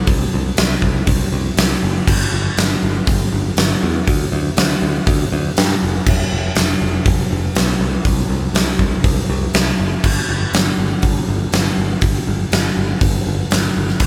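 A straight 4/4 pulse at 121 BPM drives this aggressive hard rock passage, where a huge arena drum kit sits up front with a fat snare, punchy kick, hi-hat and bright crash cymbals in a hall-like sound, while a growly, direct picked electric bass ranges from F1 to G2 beneath it, the two playing live together in one room with light reverb before moving into a new section at 10.0 s.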